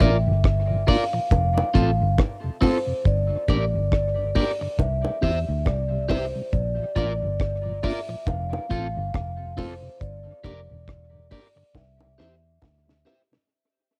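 A slow, swung 4/4 groove at 69 BPM drives this short cut from a longer roots reggae piece in F major, with a deep, dry drum kit up front, its tight kick and high-tuned snare joined by hi-hat and rim click. A dark, round, foam-muted electric bass sits alongside the drums, punchy and prominent, while low-tuned bongos murmur in the background. Above them, a slightly broken-up electric guitar adds bright, twangy, scooped accompaniment, and a soft, flute-like tonewheel organ with chorus vibrato, key click and a stopped rotary speaker fills the middle. A close-miked vibraphone played with soft mallets carries the ringing, metallic melody, and it shares dub echo, plate reverb and a cassette-tape colour with the guitar. The mood is warm and uplifting as the chords cycle through Bb, F, Gm and C, the whole passage fading out from 2.4 seconds, with a drum fill arriving at 11.8 seconds.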